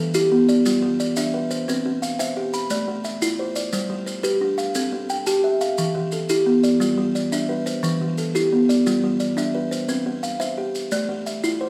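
Two up-front kalimbas open together in a hypnotic southern African traditional mbira-style interlocking cycle at 117 BPM in 12/8 and G mixolydian, one woody and hollow-boxed with a short, mid-forward thumbnail pluck, the other a mellow, soft fingertip-plucked instrument with a buzzing, ringing tone, as they arpeggiate through Em, G, C and Am before landing on A5 at 10.9 seconds, while distant, grainy maracas sit behind them from 0.1 seconds, the whole warm passage set in wet recital hall reverb and cut from a longer piece.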